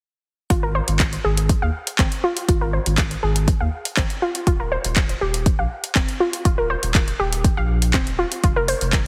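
Heavily compressed with a radio-like sheen and light reverb, this dreamy, emotional progressive house excerpt at 121 BPM opens at 0.5 seconds with a glassy, crystalline wavetable pluck spinning chorused, delayed arpeggios through a filter sweep, a thick, saturated sine sub bass, a punchy up-front electronic kick and a house kit of handclaps and metallic hi-hats, with sidechain pumping on the pluck, bass and hats as the harmony moves from a chordless start to Eb5 at 4.5 seconds and F5 at 8.4 seconds.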